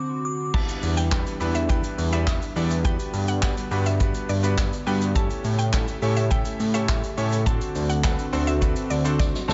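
A glassy synth bell with chorus and analog delay rings briefly over a bright grand piano and a shimmering chorused pulse-width pad, both pumping to the sidechain, before a carefree, euphoric dance-pop drop hits at 0.5 s at 104 BPM, with a punchy, roomy soft-mallet drum kit of kick, snare, handclaps, hi-hat, shaker and crash, a fat detuned analog bass entering at 0.8 s, and a woody mallet-like synth pluck carrying the melody over D7, Em7, Gmaj7 and A7 chords until a drum fill at 9.2 s in this cut from a longer piece.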